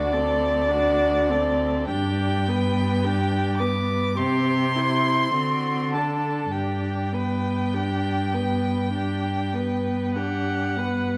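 All four strings of a quartet sound together from the start of this brief, serene passage from a slow, romantic classical movement in a rubato feel, with a focused, vibrato-laden first violin singing the high melody up front over a smooth second violin line, a warm, even viola accompaniment and a rich, bowed cello bass, all moving from D7 through G, C and D7 back to G in a dark production with a moderate stage reverb.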